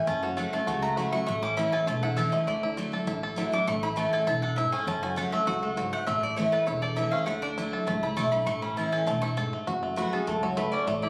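A twangy, percussive bluegrass banjo sits up front and carries the melody through this lively, virtuosic bluegrass passage cut from a longer piece. Beside it, a bright, full-bodied dreadnought acoustic guitar picks out the accompaniment, while a woody upright bass plucks the low end. The mandolin, its double strings ringing, takes a solo of short stabs until it drops out at 9.3 seconds. At 10.0 seconds a metallic, nasal lap resonator guitar, played with a steel bar and fingerpicks, steps forward with a second line in a brief solo. Captured on a phone in the room, the performance carries club reverb and compression as the chords cycle through F#m, A and Dadd9.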